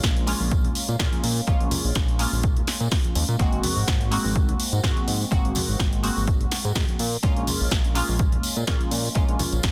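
The sound is dry and dense, with a heavily limited modern master that keeps this short cut from a longer filtered disco house track close and tight. At 125 BPM in 4/4 with a light swing on the 16ths, the groove in Bb minor feels nostalgic and sensual, moving from Bbm7 to Ab9 at 3.4 seconds and back to Bbm7 at 7.0 seconds. A fat, saturated sawtooth bass holds the low end with a thick, sustained tone and a sidechain pump, under a punchy, tape-warm electronic kick drum. An analog drum machine adds a punchy snare and hi-hats, the hats pumping with sidechain, while tambourine and congas sit in the background with a small-room acoustic feel and their own pump. Over it all runs a funky, detuned sawtooth polysynth comp with a filter sweep, chorus, phaser and sidechain pumping, playing throughout the full 9.7 seconds.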